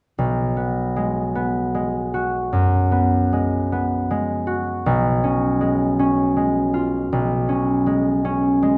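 A concert harp opens at 0.2 seconds, its mellow, ringing tone placed up front in this brief classical excerpt. The mood is dreamy and pastoral, moving at a slow 52 beats per minute in 12/8 with a free, rubato feel. Fingerpicked in an accompanying role, the harp spans the low and middle register, from B1 up to F#4. The harmony rests on a bare B5 before shifting to C#/B at 4.9 seconds, which lends a gentle sense of suspension. A moderate recital-hall reverb surrounds the acoustic instrument with a soft halo until it stops at 8.8 seconds.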